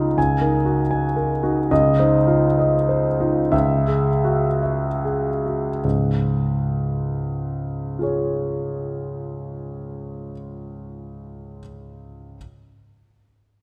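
Classical impressionist solo piano in Db major, serene and luminous, where a clear, polished concert grand with audible action noise, deep bass and long sustain sits up front in a wet concert hall, drifting rubato in 6/8 at roughly 23-42 BPM, slowing through its first 5.8 seconds over chords like Dbmaj9 and Gbsus2/Db before settling on Db, in this brief cut from a longer piece.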